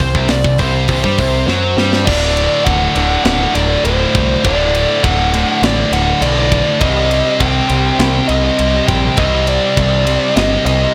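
Heavy metal at 101 BPM in 4/4, this aggressive, epic cut from a longer piece runs just under eleven seconds in a small, blown-out room that pushes the whole recording into overdrive. A dark, high-gain lead guitar carries the melody between C5 and G5, sitting slightly above the rest of the band, while two bright, picked high-gain guitars hammer out riffs from D2 to C4. A growling, overdriven electric bass sits up front, reaching down to D1, and a tight acoustic drum kit with bright cymbals, a medium-tuned snare and a soft-clipped kick keeps the pulse. After a drum fill from 1.5 to 2.1 seconds, the band drops into a half-time feel that carries through to the end. The harmony moves from a C5 power chord to D at 2.1 seconds and then to C minor at 6.8 seconds.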